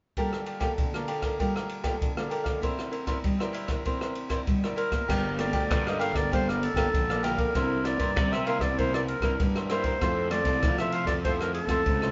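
A straight 4/4 samba-and-choro groove at 98 BPM in G minor sets a lively, nostalgic mood, with crisp picked cavaquinho and fingerpicked classical nylon-string guitar accompanying an up-front, smooth open jazz kit of dark ride and crash cymbals, rim clicks and a boomy kick, before a distant, roomy clarinet with a soft attack takes the melody at 4.8 seconds and a growly, overdriven fuzz bass punches in at 5.1 seconds, the band heard live in one room under moderate studio reverb with softened highs in this excerpt from a longer piece.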